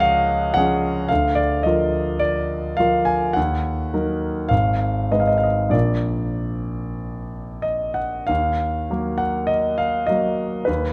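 Mournful and wistful, this short excerpt from a romantic classical nocturne in E-flat minor drifts at a slow, rubato 46-56 BPM in 4/4 on a single intimate concert grand piano, heard close and up front with deep bass, long sustain and audible action noise, spanning Ab1 to Ab5 through a harmony that moves from Db and Bb/D to Ebm at 3.4 seconds, then Abm and Bb before settling back on Ebm at 8.3 seconds, all set in a moderate recital-hall reverb.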